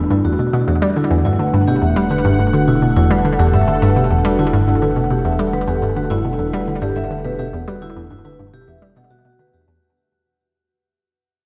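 A hollow, bouncy square-wave pluck sits up front with a riff in the low register, colored by chorus, phaser and delay, over a sustained Emadd9 chord from an evolving, detuned sawtooth pad that fades in. This cosmic, hypnotic piece of sequencer-driven space music moves at 105 BPM in E minor, with a metallic vibraphone ringing out delayed arpeggios as it fades in, and a round, deep analog bass holding a low E with tube saturation. The dreamy, cassette-textured mix is soaked in lush hall reverb, and this fragment of a longer piece begins fading out at 3.7 seconds.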